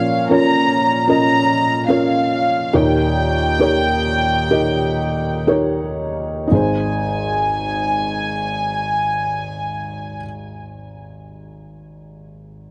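A felt-muted upright piano and a studio violin section begin together in this emotional, heartfelt pop fragment, cut from a longer piece. The piano sits up front with a soft, mellow, intimate tone, spanning deep bass notes to the middle of its range as it supports the harmony. Above it, the bowed violins carry the melody in a narrow high register, their gut-string, reedy sound marked by light vibrato, a smooth top and a tape echo that gives them a period character. The opening passage slows as the harmony moves from Bbm to Eb7, and the second passage settles on Ab. The violins stop at 10.2 seconds, leaving the piano alone until 12.7 seconds, all captured in a dry, close 1970s-style studio sound with little reverb.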